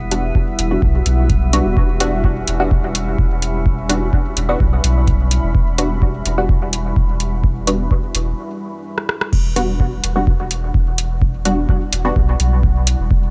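Cavernous and deep, this dub techno excerpt moves at 127 BPM in E dorian, resting on a single Em9 chord as a dark, detuned ambient pad and a round, soft sub bass pulse under sidechain pumping in a digital ambience. Muted, chorused chord stabs pass through phaser, cassette tape and dub echo as a filter sweep opens on them, while a glassy texture of drifting overtones sits in the background until 8.4 s. A booming analog drum machine with metallic hi-hats, crash cymbal and rim click is soon joined by a tape-warm electronic kick, with a brief break and a drum fill before the section repeats at 9.3 s.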